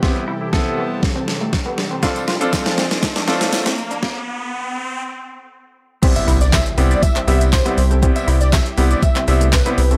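A dry, gritty sound with digital ambience and a high-pass filter frames this euphoric, upbeat dance-pop cut from a longer piece, moving at 120 BPM in a straight 4/4 in C major over Cmaj7 and F6 chords. The opening build-up carries a drum fill, a filter sweep and a background riser, while a clear, polished concert grand piano with short sustain plays accompaniment and an airy, breathy pad with chorus holds soft, detuned sustained chords, both pumping against the sidechain. A clean, twangy picked electric guitar with lush chorus plays a riff in the background, and a jingly acoustic tambourine sits distant and very quiet in a large room. Up front, the pop drum kit is electronic and layered, with a knocking kick, deep snare, handclaps, hi-hat, shaker and crash cymbal, overdriven and re-recorded in a small room. After a stop, the drop lands at 6.0 seconds with an impact, a thick, bold unison lead with vibrato and a sub octave arrives at 6.2 seconds, and a round, dark analog bass on a low C enters at 6.3 seconds, pumping under the sidechain.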